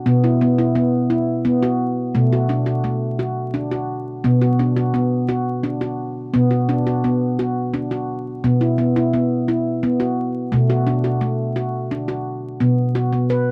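A wet booth ambience with vinyl crackle frames this short, hypnotic world-meditation excerpt in 6/8, where a solo handpan of nitrided steel, struck with soft fingertips and placed up front, rings out mellow and mid-forward across its range, circling through chords over a B pedal that settle on an open B at 12.6 seconds.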